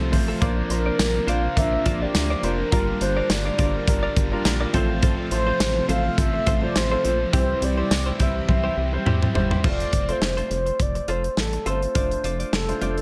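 A round, horn-like synth lead with vibrato, chorus and tape echo carries the melody through this romantic, glossy 1980s-style pop excerpt in F major at 104 BPM with a light 16th-note swing. Beneath it sit a rubbery square bass and a modern drum kit with a punchy kick, gated reverb and bright cymbals. A polished grand piano adds a fill at 4.2 seconds, alongside a clean direct electric guitar riff, a lush vintage string machine, very quiet funky polysynth stabs and a distorted, double-tracked high-gain guitar in the background. A drum fill at 8.5 seconds leads into a new section at 9.6 seconds, where the strings and stabs drop away.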